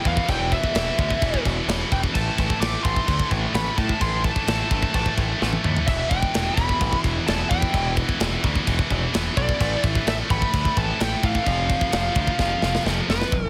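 An up-front metal drum kit drives this dark, relentless heavy metal passage, its snug kick and medium-tuned snare sitting mid-forward among crash, ride and toms, with fills arriving at 5.4 and 12.4 seconds. Beneath it, a heavy high-gain guitar and a scooped, distorted second guitar set in the background play a picked riff in the low register, moving through E5, A5, Em and A5 before landing on F5. A growling picked electric bass, overdriven and heard both direct and amped, adds low-end weight. Over the top, a smooth, bright overdriven lead guitar carries the melody in a high register, trailed by delay. The drums carry a big-room character, while the rest of the mix stays close and dry, dense and heavily limited in a modern style, in a straight 4/4 cut from a longer piece.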